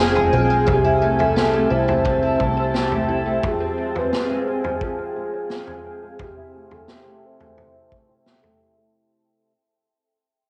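Dream pop, blissful and dreamy, in which a hollow, woody clarinet-like synth lead with chorus and tape echo floats over a shimmering, ethereal pad, dark octave-doubled twelve-string acoustic guitar arpeggios and a vintage drum kit with a punchy kick, while a funky, plucky analog bass drops out at 3.4 s, all in a cassette-worn home recording with a filter sweep and fade-out running through the whole 9-second cut.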